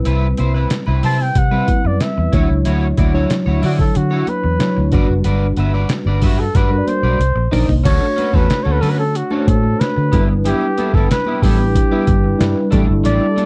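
A breathy flugelhorn with light vibrato and scooped notes carries the jazz-style melody from 1.1 seconds, its slapback echo floating over a breezy, upbeat slice of polished 1980s jazz-funk pop at 92 BPM in D major, moving through chords such as Cmaj7, Dmaj9 and Cm9. Underneath, a mellow tine electric piano with analog chorus and a round, foam-muted fingered bass, dark and punchy up front, support a twangy, slightly broken-up picked guitar riff, also chorused. A gritty, pitched-down sampler-style drum kit with a thumpy kick and a tape-warm tone plays a fill from 6.6 to 7.9 seconds into the second section, while high-tuned congas sit very quiet in a dry, close 1970s-style studio sound.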